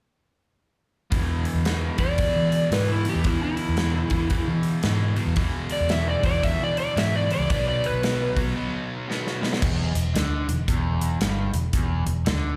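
Raunchy and driving, this swung blues rock and southern rock excerpt, heard live through a club PA with light reverb, rides on an overdriven, double-tracked semi-hollow guitar riff picked with a bright edge and slapback echo. Underneath sit a dark, round, foam-muted fingered bass and a big-room acoustic kit with a punchy kick, medium-tuned snare and bright cymbals. An up-front slide guitar, warm and overdriven with its own slapback echo, carries the melody from 2.0 s until shortly before a break, and a drum fill leads into a new section at 9.6 s.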